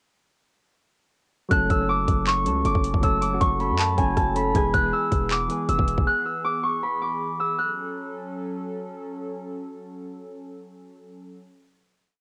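A thumb-plucked Celtic harp carries a looping, ringing melody up front from 1.5 s to 8.7 s, filtered and tape-colored like a sampled loop, in this dark and melancholic trap piece in F# minor at 158 BPM with a half-time feel. Beneath it, round electric-piano-like synth keys play open-voiced rhythmic chords over F#m and E, while a distorted, aggressive 808-style bass slides through long sub notes and a trap kit with a hard-clipped kick, metallic hats, claps and rim clicks hits until 6.1 s. A hollow, flute-like pad sustains quietly to the final F#m chord, ending at 11.4 s, all with a dry, lo-fi cassette character.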